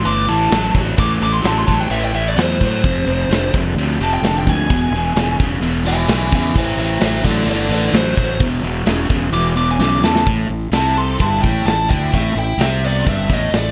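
Smoky and gritty, this blues rock and southern rock power-trio excerpt sets a biting, overdriven lead guitar solo over a double-tracked crunchy rhythm guitar riff up front, a growly fuzz-laden fingered bass and a big acoustic drum kit with a punchy kick, whose fill at 9.8 seconds closes the solo at 10.3 seconds before a bright second guitar line with slapback echo slips into the background at 10.8 seconds, inside a light studio reverb.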